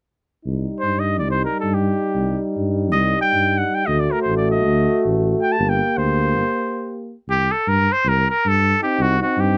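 A mellow French horn, a warm trombone and a dark, up-front tuba with light vibrato open this restless, virtuosic Balkan brass excerpt in free time at 0.5 s, joined at 0.8 s by a bright, nasal cornet with a straight mute carrying the melody in C dorian sharp4 over Cm, D and Gm chords, with a break at 6.4 s before a new section returns to Cm, all captured by close, detailed microphones with light reverb.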